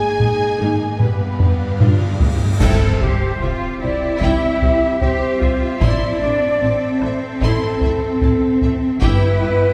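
Dramatic and heroic, this slow 75 BPM cinematic orchestral excerpt sets a background violin melody and airy flutes over mellow French horns, lush studio strings, expressive violas, woody double basses and rich cellos, while heavy-stick taiko drums drive beneath, a round timpani fill and huge, dark cymbal swell with sub drop build from 1.0 seconds to a bright crash of clash cymbals and bass drum at 2.6 seconds, and the chords move from Absus2 through G7 to C, Am and Em/G in a reverberant scoring-stage space heard from further back.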